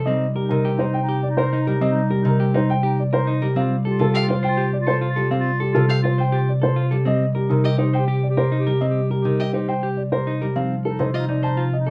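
A classical minimalist pattern piece in 3/4 at 103 BPM, cut from a longer work, this C dorian passage feels meditative yet urgent as a dark, boxy baby grand carries the melody over ringing, fingerpicked concert harp accompaniment placed up front, with clean, fingered electric guitar arpeggios and a distant, roomy clarinet tracing a second line. A single bowed violin joins at 4.2 seconds with smooth, even arpeggios and vibrato, while the chords move from Cm7 through a rootless Dm7 and Eb6 to F7. The production is dark and warm, with little reverb.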